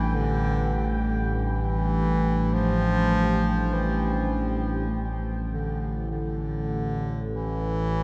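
Drenched in a huge, cavernous reverb with a warm production, this desolate dark ambient drone at 50 BPM sets a clear, up-front solo bass clarinet melody in classical style, touched with delay, over an evolving, chorused sawtooth drone on A1 with pulse-width and ring modulation, a deep, moody, detuned pad with chorus whose sustained chords move from Gadd9/A to A5 at 4.9 seconds, and a resonant, bubbling stepped-filter texture with chorus and its own reverb, sitting in the background until it stops at 4.9 seconds.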